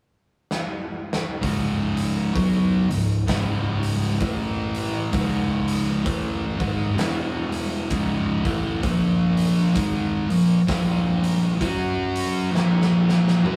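Two thick fuzz guitars dominate this brooding, ominous stretch of stoner and doom metal, both electric, distorted and picked, sitting up front as they play the riff together from 1.4 seconds, one warm in tone and the other dark. The pace is a slow 65 BPM in 4/4 with a swung eighth-note feel, set in C# dorian, and the guitars span C#2 to F#4 as the harmony moves through power chords on C#, A, E, A# and F#, with C# minor chords in between. Before they arrive, an oversized low-tuned drum kit opens at 0.5 seconds with a fill, its acoustic sound built from hi-hat, boomy kick, medium-tuned snare and toms in a big, pumping room, gritty and saturated. Another drum fill comes at 12.5 seconds as the music keeps going to the cut at 13.6 seconds. The band sounds as if playing live together in one room, with a wet studio ambience around them, in a passage taken from a longer piece.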